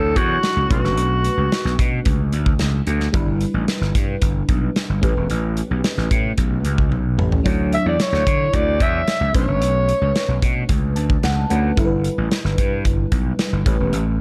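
A growling alto saxophone opens this short cut from a longer piece of polished 1980s jazz-funk pop, heard over a chorused FM electric piano and a gritty slap bass, with the drum kit joining a moment later. The mood is glossy and breezy at 111 BPM in a straight 4/4, moving through Dmaj9, Bm9, G6 and A9 chords. The electric piano, layered with a soft pad, carries a lush, dreamy tremolo shimmer and adds a mellow fill near the end, while the overdriven slap bass sits up front with a bright, growly punch. The acoustic drums sound airy and small-roomed, with a punchy kick and a medium-tuned snare, and they play a fill at 6.9 seconds. The raspy, breathy saxophone melody returns at 7.7 seconds with vintage vibrato, set in a dark production under light reverb.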